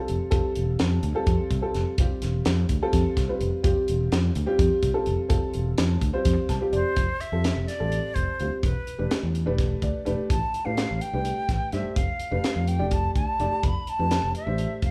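Soaring and bright, this electric jazz fusion excerpt in a straight 7/8 sets a dark, worn baby grand piano with audible action noise, a warm fretless electric bass and a tight funk kit with a high-tuned snare in a reverberant studio room, the piano adding short fills as an airy silver flute with vibrato takes the melody at 6.7 seconds.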